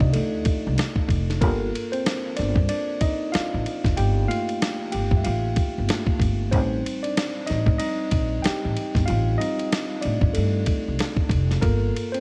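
Smooth and soulful, this neo-soul R&B excerpt at 94 BPM with a swung sixteenth-note feel features a worn, slightly out-of-tune tine electric piano up front, moving from Cm69 to Gm9 at 11.6 seconds, over a woody, growly pizzicato upright bass that stops at 11.9 seconds and a gritty, compressed sampler-style drum kit with a thumpy kick, medium-tuned snare and ride cymbal re-recorded in a large room, set in a dry, close mix.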